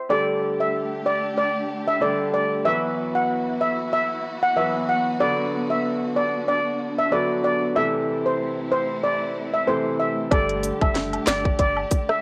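Dancehall at 94 BPM with a bouncy, tough swing, this cut opens on a shimmering steel pan melody with tape echo over clear grand piano and lush bowed strings pumping under cassette-tape grit through Gsus2, Esus2, Bm and Am, before a punchy sub bass, a tight, crisp island pop drum kit with handclaps and rim clicks, and close, dry woodblock and cabasa drop in at 10.3 seconds.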